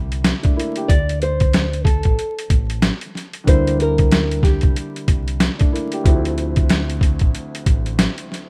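Gritty, pitched-down sampler drums sit up front in this moody, tough boom-bap hip-hop excerpt, their thumpy kick, medium-tuned snare and compressed hi-hat pushing a swung groove. A round, dark fingered electric bass and a mellow, long-sustaining grand piano with a cassette-tape tint carry the harmony from C7 toward Dm7. Between 0.9 and 4.9 seconds, a fingerpicked nylon-string guitar adds a classical melody through analog delay, all set in a small room with vinyl crackle and a rough home-demo finish.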